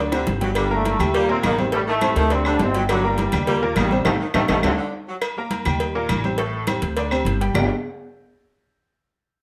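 Passionate, danceable salsa in G harmonic minor at 206 BPM, where a mellow, punchy trombone section carries the melody until 4.7 seconds over a bright, slightly detuned upright piano with audible action noise and a dark, thumpy pizzicato upright bass up front, while a clear saxophone section adds a second line in the background and congas, claves, ringing agogo bells and timbales, and close, dry bongos and cowbell drive the groove through drum fills and a band accent in this short cut from a longer piece.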